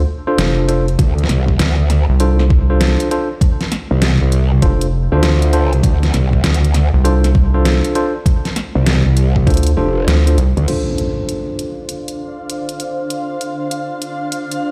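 A swung sixteenth-note groove at 99 BPM in 4/4 drives this playful, swaggering glitch hop passage in D minor pentatonic, cut from a longer piece and resting on a Dm7 chord. An overdriven, knocking electronic kick sits up front beside a layered pop drum kit with a deep snare, hi-hat and crash, also overdriven and re-recorded in a small room. Two basses share the low end: a rubbery, hollow square bass with a bouncy filter pluck, and a louder growl bass that wobbles through a formant filter with distortion and chorus. Above them, a clean tine electric piano plays stabs through a combo amp, colored by medium tremolo, sidechain pumping, digital delay and a low-pass filter that sweeps from 10.7 seconds. The kick drops out at 10.1 seconds, an electronic impact lands as the second section begins, and a blurred, detuned granular cloud pad drifts in at 11.5 seconds with its own reverb and pumping. 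The mix is dry overall but carries the stony ring of a bare room heard over a big sound system.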